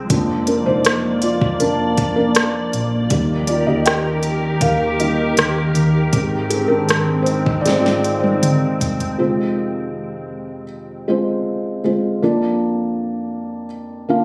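A soft, thick-felted upright piano leads this longing, emotional pop ballad fragment, its mellow, intimate voice up front as a glassy FM pad with ensemble chorus and its own reverb holds ethereal, slow-blooming chords beneath it. A dark, foam-muted electric bass with a round, punchy tone and a tape-warm, smooth R&B kit with a fat snare and smooth hats support the piano, the drums rolling into a fill at 7.7 seconds that carries through to 9.2 seconds. At 9.2 seconds the piano carries on alone over a light digital ambience that sounds as if it was captured on a phone in the room.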